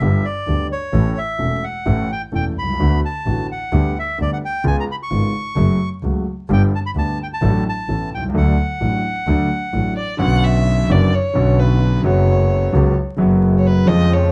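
Playful yet passionate, this short tango excerpt moves at 130 BPM in 4/4 with a rubato feel, starting in D major. A reedy bandoneon carries the melody between C#5 and C#6 until 9.9 s, over a clear concert grand piano that sits up front with deep bass and long sustain, and a bowed double bass with a warm, focused tone and vibrato. The harmony moves through chords such as G, A, D6, C#7 and F#m before settling on D. A rich, smooth violin with light vibrato enters at 10.0 s, and at 10.2 s the music turns to B minor as the violin plays a solo over the piano and bass, moving from Bmadd9 to F#sus4. A dark, warm production with moderate club reverb and a bed of vinyl crackle gives the recording an old-record character.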